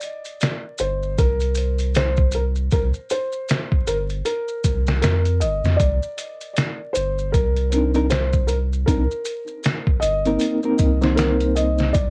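A brooding, melancholic trip hop excerpt in C minor at 78 BPM with a swung 16th feel opens on a felt-muted upright piano melody, soft and intimate with cassette tape echo, over a gritty, pitched-down sampler-style drum kit with a thumpy kick and close acoustic maracas. A deep, round dub sub bass enters at 0.8 s, the harmony settles on Cm7 at 5.8 s, and a reedy, bright electric piano with tremolo joins at 7.7 s, heard through its built-in speakers. The home cassette recording carries vinyl crackle and a modest booth ambience.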